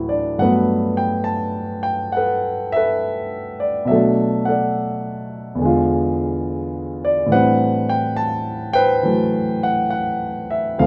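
A dark concert grand piano carries this short solo jazz fragment alone, sitting up front with a mellow, natural tone and a deep bass register reaching down to D2. The mood is sophisticated and swinging, with a loose swing feel on the eighth notes that is stretched by rubato phrasing. The harmony moves from Gmaj9 through Bm7 and E7b9 to Am11, giving the passage a rich, searching colour. A small room adds a noticeably wet reverb around the piano, and the rough home-demo mix keeps the sound intimate and unpolished. Cut from a longer piece, the recording runs just under 11 seconds, from the opening chord at 0.4 seconds to the end.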